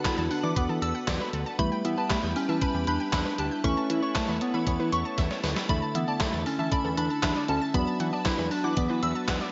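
Synth-pop at 117 BPM in E dorian, this short cut from a longer piece feels driving yet melancholic, moving through Bm7, Em, Aadd9/E, Dsus2/E and Bm7/E over a steady 4/4. A round, gentle struck synth lead carries the melody with a vintage FM warble, vibrato, chorus and tape echo, while a shimmering, dreamy bell with a halo adds a bright second line above it from 0.1 to 9.1 seconds. In the background, soft electric-piano-like keys give mellow, decaying accompaniment, a lush string machine holds full sustained chords with ensemble chorus, and a warbling analog pluck spins bright arpeggios through tape echo. Underneath, a fat, thick sawtooth bass with a moving notch anchors the low end, and an up-front gated 80s drum machine drives the groove with a thumpy kick, hi-hat, handclaps and a gated-reverb snare, including a fill at 5.2 seconds. The mix sits in light reverb with a softened top end.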